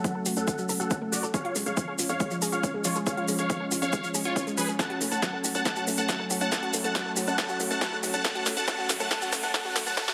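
Euphoric and soaring, this uplifting trance build-up at 139 BPM in F# harmonic minor is cut from a longer piece, with a huge, detuned supersaw lead carrying the melody up front through phaser, tape echo and a filter sweep, over a lush, thick unison pad, a round analog pluck arpeggio with dub echo, and a tight, mellow sequencer bass sitting in the background. A punchy electronic kick, a tape-warm big-room kit with crisp hats and a punchy snare, and grainy maracas drive the pulse, while sidechain pumping breathes through the synths and a drum fill begins at 4.8 seconds. A very quiet riser enters at 6.7 seconds as the chords move from F#m to C#/E# and back, all bathed in a huge ambient reverb.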